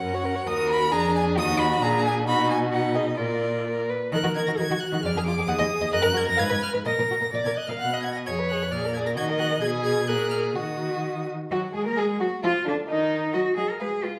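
A rich-toned first violin carries the melody with smooth, even vibrato across this stormy, urgent classical-period string quartet movement, which moves quickly in 2/4 with a rubato feel. Beneath it, a dark second violin sings an expressive second line with portamento, while a close, warm viola adds accompaniment with similar sliding expressiveness and a smooth, even cello anchors the bass. The four players sit in a wet recital-hall reverb, and this passage, cut from a longer piece, shifts into new material near 4.1 and again at 11.5 seconds.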